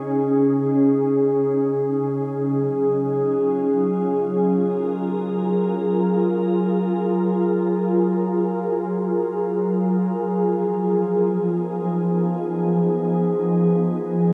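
This ambient piece, cut from a longer work, unfolds in free time with a serene, spacious mood, tuned to A4 = 439 Hz. A single glassy FM pad carries the whole passage alone, sitting up front with a sine-like, ethereal tone that rises on a slow attack, sustains and fades on a long release between C#3 and A#4. Ensemble chorus and built-in reverb thicken the pad, while a diffuse ambient delay lets its tones drift and linger. The harmony opens on C#sus2, shifts to F#maj9 at 2.4 seconds, then settles into a shadowed Fm7b5 at 10.4 seconds. A wet cathedral reverb with a long decay surrounds the sound, and the recording carries a cassette-tape character.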